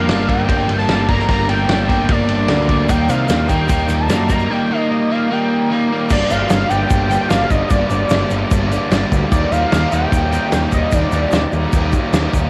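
A straight 4/4 indie rock groove drives this moody, bittersweet excerpt, with a loose, up-front drum kit of fat snare, tight kick and dark cymbals anchoring a growling, overdriven picked bass and a bright, compressed fuzz guitar riff throughout. A crunchy overdriven guitar adds a lush chorus-tinged riff until 6.1 seconds, while a fat, detuned sawtooth lead with vibrato and a plucky filter carries the melody until 11.5 seconds, and a grainy egg shaker sits in the background from 2.9 seconds. The home cassette recording gives the parts a tape-worn character inside light reverb and small room ambience as the harmony moves from G minor through E-flat to a closing E-flat major seventh.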